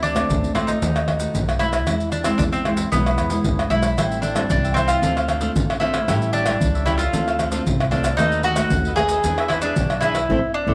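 Bittersweet and nostalgic, this brief excerpt of samba and choro moves at 114 BPM in a straight 4/4, with an up-front, round mandolin carrying the melody over a full-bodied, fingerpicked nylon-string guitar whose finger squeak can be heard, and a woody pizzicato upright bass. A vintage, band-limited percussion section of pandeiro, maracas, tamborim and deep surdo sits close, played with soft hands, while a crisp picked cavaquinho joins in the background at 4.0 seconds. The harmony winds through minor chords such as Dm7 and Am7 toward E7, the band hits an accent at 10.3 seconds, and a moderate echo-chamber reverb and small-room ambience give the ensemble a gentle glow.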